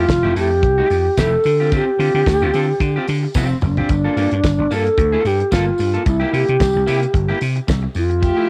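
A mellow, close-miked alto flute opens this glamorous, danceable disco clip in G dorian, carrying the melody with pure tone, vibrato and tongued notes, softened by cassette tape and analog delay. Beneath it, a growly, punchy vintage slap bass sits up front, while a twangy, fingered electric guitar at the edge of break-up adds quiet accompaniment. A dry 70s drum kit with a fat snare and tight kick drives a swung 4/4 groove at 111 BPM, with a jingly tambourine tucked far in the background. A drum fill at 3.3 seconds leads from the opening Fmaj9 and Dm7 chords into a passage built on Gm9 and C7. At 8.2 seconds, shortly after the harmony returns to Fmaj9, a clear, lush bowed string section enters with smooth sustained chords. The whole clip has the close, dry feel of a home cassette recording.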